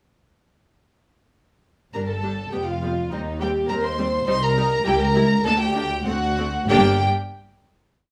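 In a straight 2/4 at 95-104 BPM, this short, restless and stormy classical-period piece for string orchestra in G minor puts a dark, smooth-topped violin section melody up front, doubled at the octave by a second violin section with a pure, floating tone, over rich violas playing repeated notes and sustained chords, while warm cellos set the bass on the beats and the double basses double that line, with every section bowed sul tasto with a soft attack, entering together at 1.9 s and closing on a G minor chord at 6.7 s in light studio reverb.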